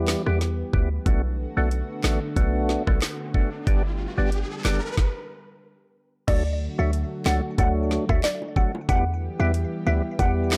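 A punchy, tight 808-style bass, a fat, lightly overdriven tonewheel organ turning through a slow rotary speaker, and a lush, detuned unison pad pumping in the background open this bouncy, sultry dancehall excerpt at 92 BPM over chords moving from Em to Bm7, G and D, with an up-front island pop drum kit with a knocking kick, woody snare and metallic hats driving it from a split second later. An electronic riser enters at 3.1 seconds and leads into a brief stop at 5.0 seconds. At 6.3 seconds a crystalline wavetable pluck carries the melody with chorus and digital delay, while very quiet, low-tuned bongos add soft acoustic hand percussion, all in a dark, dry production.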